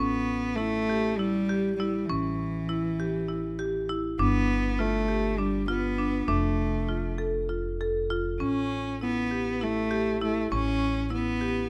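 A rich, bowed cello sings an even, vibrato-laden melody up front over bright, woody marimba arpeggios and a dark pizzicato upright bass, giving this urgent, hypnotic chamber excerpt in 7/8 a close, detailed sound with light reverb as it moves through A7, G7 and Dm/F before returning to A7 at 8.4 seconds.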